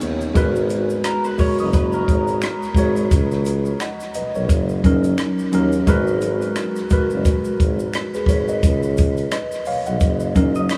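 A worn, slightly out-of-tune tine electric piano, a soft-attack tuba, a dry cocktail drum kit with punchy kick, hi-hat and rim click, and a background tube shaker with finger snaps open this late-night, introspective swung neo-soul R&B fragment cycling through G#m9, Badd9 and F#6, while a dark, slightly broken-up guitar drenched in lush chorus sings a brief second line from 1.0 to 2.9 seconds and returns at 10.6 seconds, all floating in a dreamy, reverb-soaked mix.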